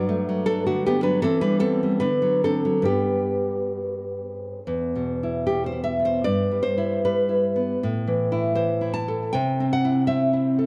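A fingerpicked nylon-string guitar sits up front in this short, sunny romantic piece for solo classical guitar, played rubato in 2/4 at 64-83 BPM and turning from G major to E minor at 4.7 s, its warm acoustic tone touched by tape echo and set in a moderate recital-hall reverb within a dark, warm production, all lifted from a longer work.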